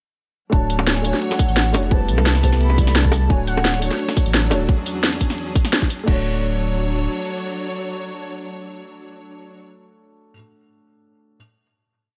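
A sub bass, deep, round and up front, anchors this short, lush piece of liquid drum and bass at 173 BPM in D major, holding long gliding notes from 0.5 s until 7.1 s. Over it, a tight, tape-warm electronic kick and a layered kit with cracking snare, crisp hats, tambourine and crash roll through a two-step groove for the drop, both stopping at 6.1 s, while soft, high-tuned bongos add light, dry hand-drum touches. A velvety, detuned synth lead with chorus, portamento and dub echo sketches a brief motif of call phrases high in its range, ending at 3.8 s. A felt-muted upright piano, intimate and mellow with audible action noise, carries held chords with syncopated pushes through dub echo, and a symphonic string section spreads a bowed, vibrato-rich pad roughened by vintage 12-bit sampler grit and sidechain pumping. The harmony moves through Dmaj7, Fmaj9#11 and E13 before settling on a final Dmaj7 chord, where the piano lingers alone to close at 11.4 s inside a digital ambience.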